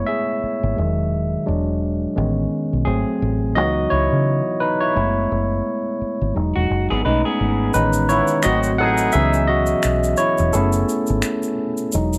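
Late-night and introspective, this swung 86 BPM neo-soul R&B excerpt features a bright, barky tine electric piano with light overdrive soloing up front over extended chords, joined at 0.4 s by a deep, round, punchy dub fingered bass, while a dark, lo-fi guitar through a small old amp slips in briefly at 6.6 s, egg shaker and finger snaps arrive at 7.7 s, and a clear vintage horn section adds octave-doubled stabs in the background, the whole sitting in a moderate spring reverb.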